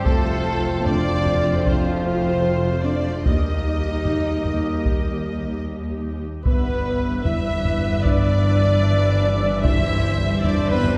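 This epic, cinematic orchestral excerpt opens with the full ensemble at once: rich violin and viola sections with smooth vibrato, a dark cello section carrying the bass, and clear trombones, woodwinds and mellow French horns holding sustained chords. A lush, warm violin section takes the melody in the background, joined by a more distant violin section playing a second line, while a mellow trumpet adds stabs. Heavy-stick taiko drums and an expressive double bass section give the adventurous, triumphant mood a weighty foundation. The harmony moves from F through Eb and G6 before settling on Cadd9/G, and at 9.6 seconds a very quiet, round timpani note on G2 joins the close of the phrase. The whole orchestra sits back in the hall, bathed in a wet scoring-stage reverb, while the horns and trumpet sound close-miked, the horns playing with a tight ensemble sound.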